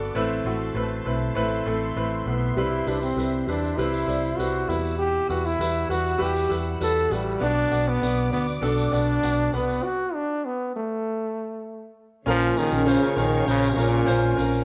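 A bright, close-miked trombone carries the melody with vibrato and a touch of delay from 2.3 seconds in this uplifting piano-driven pop piece at 99 BPM in 4/4. It sits over a clear, polished concert grand, a round, punchy muted electric bass, a lush bowed string section in the background and a jingly tambourine, as the chords move from Amadd9 through Cmaj7 and Emadd9 to Bm before a stop at 9.8 seconds. At 12.3 seconds a new section on Bbm brings in a dark, distant French horn section and a very quiet fingerpicked steel-string acoustic guitar, with the whole band sounding as if it plays together in one large room, wet with reverb.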